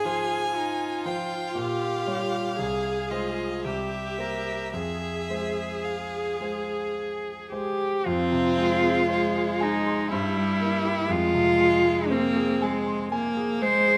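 Heard close and detailed in a moderate recital-hall reverb, this 14-second passage cut from a slow romantic movement for piano quartet sits in F minor at 54-61 BPM in a rubato 3/4, melancholic and elegiac, and restates its opening phrase at 8.1 s. The rich cello stands up front as the strongest voice, carrying an expressive second line with vibrato and portamento beneath the warm, smooth violin melody, while the viola adds clear, even bowed accompaniment. A vintage-toned concert grand with deep bass supplies accompaniment spanning from the low bass up into the treble.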